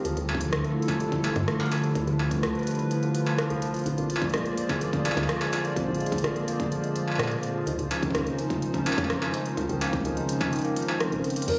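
Captured on a phone in a reverberant club space with a wet echo-chamber tail, this eerie, cerebral IDM excerpt moves at 126 BPM in straight 4/4 over Dmadd9, Bb7 and Dbmaj7 chords. A barky, slightly out-of-tune tine electric piano plays gritty, lightly overdriven arpeggios with tape echo, above a woody, round FM bass and a hollow, flute-like pad with chorus and 12-bit grain. An up-front industrial kit of smooth hats, crash, rim clicks and struck metal is soon joined by a distorted electronic kick, a drum fill lands at 11.2 s, and a warbling, nostalgic lead with tremolo and vibrato enters on a single note at 11.5 s.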